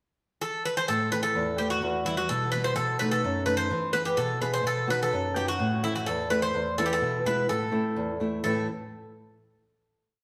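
A bright, metallic Greek bouzouki leads this short Greek folk piece from 0.4 seconds, its picked double strings, some doubled at the octave, carrying an ornamented modal melody in A dorian sharp4. A small-sounding nylon-string guitar joins at 0.9 seconds, fingerpicking bass notes and chord figures in an oompah accompaniment at 127 BPM in a straight 2/4, moving through Am, Em, B7, E and B, then back through Am, E and Am, before a final chord arrives at 8.4 seconds. The two play live together in a large studio with a wet reverb, giving this cool, moody piece a roomy, resonant sound.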